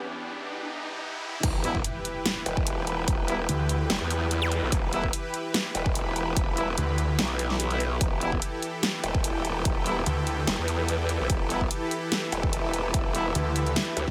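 A growling, saturated wobble bass with a formant-filtered bite and chorus sits up front in this aggressive, heavy dubstep excerpt in E minor, running at 146 BPM in a half-time 4/4 feel. The opening 1.4 seconds form a build-up over a single E minor chord, where a lush, detuned supersaw pad with sidechain pumping goes through a filter sweep while a riser, impact and zap effects lead into the drop. At 1.4 seconds the drop hits, bringing in a punchy, layered electronic kick and a dubstep kit with a huge snare, hi-hat and crash, both re-recorded in a small room and placed up front. Behind them, an airy, breathy pad with ring modulation, chorus and sidechain pumping drifts in the background, and a clear classical-style brass ensemble adds stabs through a digital delay. Short bursts of a snarling, distorted sawtooth unison bass on D2 cut through at 3.5, 6.8, 10.1 and 13.4 seconds, and the whole mix sits in light reverb and digital ambience.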